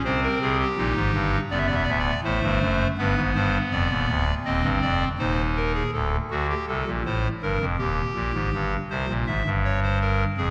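A hollow clarinet stop with chiff sits up front in a wet, reverberant scoring stage as a solo pipe organ, ranging from D1 to E5, voices a contemplative, solemn baroque-style three-part fugue at 81 BPM in 4/4, moving through chords from Cm to D7 and G7 before a second section shifts at 5.9 seconds toward Gm and C7 in this short passage cut from a longer piece.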